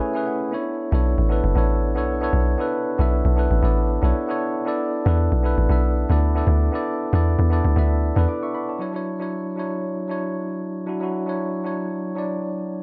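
A deep, round log drum bass sits up front, dark and percussive with a noise layer and a fast, decaying attack, driving the drop from 0.9 to 8.3 seconds in this soulful amapiano piece at 116 BPM with a 16th-note swing. A clean tine electric piano, heard as if through built-in speakers, opens with a brief fill and carries the chords throughout. It moves from Amaj7 through Bm11 and E7sus4 before settling on Dmaj9 once the bass has stopped, all inside a digital ambience.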